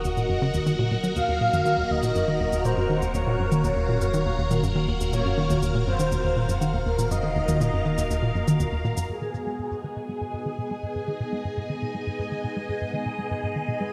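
A straight, driving 121 BPM pulse in 4/4 from a tight, punchy sequencer bass riff with tape echo anchors this mysterious, cosmic fragment of ambient space music in Eb dorian, where a lush vintage string machine holds phased, chorused chords, a deep sine sub bass sits low and tape-echoed electronic shaker and toms fade in beneath a breathy, flute-like lead melody from 1.2 to 8.6 seconds, and at 9.1 seconds the harmony shifts to G# minor as the sub bass and percussion stop and a filter sweep moves through the bass, all bathed in a lush hall reverb.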